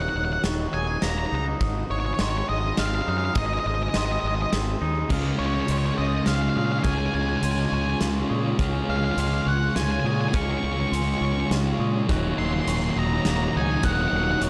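A straight 3/4 pulse carries this brooding, cinematic post-rock excerpt, anchored by a growly, overdriven fingered bass up front and a huge arena drum kit with a punchy kick and bright cymbals entering at 0.4 seconds in a pumping hall. A dark, octave-fuzz lead guitar with slapback echo sings the melody over a very quiet, shimmering, ethereal pad, a soft bell-like glockenspiel played with rubber mallets, and a faint, twangy clean guitar playing fingered arpeggios. At 5.1 seconds a thick fuzz guitar riff pushes to the front as the chords move from Ebm7 and Ab to Db, all within a dark, small-room production.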